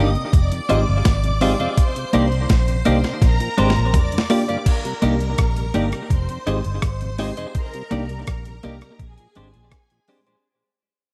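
Bittersweet and smooth, this lovers rock reggae excerpt sets a thumpy, up-front 12-bit drum machine and a round, foam-muted fingered electric bass beneath bright, twangy twelve-string electric guitar stabs with spring reverb and tape echo, a worn, slightly out-of-tune tine electric piano with light overdrive, a very quiet, mellow tonewheel organ with key click and slow rotary speaker, and a shimmering string machine violin line with ensemble chorus, set in a digital ambience, with a drum fill from 3.2 seconds before the music fades out from 4.7 seconds.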